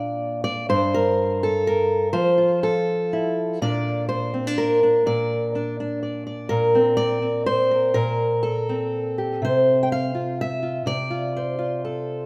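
In light reverb, an up-front fingerpicked steel-string acoustic guitar with an auditorium body and a finger squeak plays alone in this reflective, wistful folk excerpt, a straight 3/4 at 124 BPM spanning G2 to G5 and tuned to A4 = 439 Hz, moving from Bb to Fmaj7, then opening a new passage at 3.6 seconds that returns to Bb before a rootless Gmadd9/Bb and a closing Csus4.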